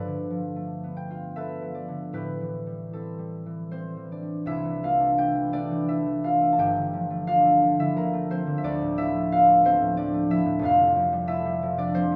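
Heard in a recital hall with moderate reverb, a solo concert harp sits up front, its thumb-plucked strings warm and ringing across a range from F1 to A5. This gentle, wistful classical fragment, cut from a longer piece, moves in a rubato 3/4 between roughly 74 and 92 BPM, opening on G9 and Am7 before a second section from 4.4 seconds drifts through C69, Gm9, Dm6 and finally Fadd9. The harp plays throughout the full 12.2 seconds, with the tuning set to A4 = 442 Hz.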